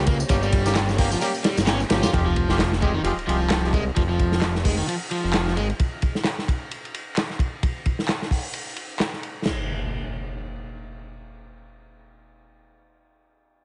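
Energetic and swaggering, this excerpt of breakbeat in F minor at 131 BPM with a swung feel opens on a deep, warbling pad, an overdriven electric guitar riff with delay, punchy horn stabs filtered and echoed, and a fat, detuned sawtooth bass up front, while a gritty, saturated acoustic breakbeat kit with dark cymbals and a re-recorded analog drum machine of handclaps, ride and tambourine drive on until about 9.6 seconds, as a sub drop and impact hit at 2.1 seconds alongside a filter sweep on the horns, and return at 9.5 seconds in a small, dark-toned room.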